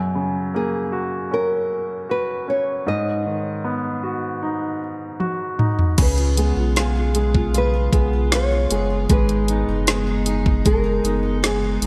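Hopeful and tender, this excerpt from a pop ballad moves at 77 BPM in a straight 4/4, drifting through F#add9, G#m7, C#7 and G#m. A clear, polished baby grand piano sits up front from the start, and a dark, small-bodied nylon-string guitar carries the fingerpicked melody above it almost at once. A drum fill at 5.2 seconds brings in a smooth, electronic, tape-warm R&B kit with a knocking kick, woody snare and warm hats. From 6.0 seconds a round, deep sine sub bass anchors the low end, while a full-bodied jumbo steel-string guitar adds picked arpeggios, its finger squeaks caught under lush chorus and a diffuse ambient delay. A moderate plate reverb soaks the whole mix in a dreamy haze.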